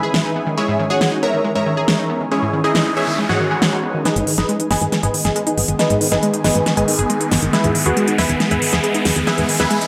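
A punchy, detuned supersaw stab carries the melody up front over a shimmering, ethereal pad and a round, bright analog pluck arpeggio, with crisp hats and a huge snare from a layered big-room kit joining at once, in this emotional, bittersweet uplifting trance excerpt at 138 BPM in G# minor. A noise sweep arrives at 2.6 s, and a build-up with a drum fill, a riser and a filter sweep on the supersaw begins at 4.1 s, just before a tight, driving sawtooth-and-square sequencer bass enters at 4.2 s, all moving through C#m, G#m and E in a moderate digital room reverb.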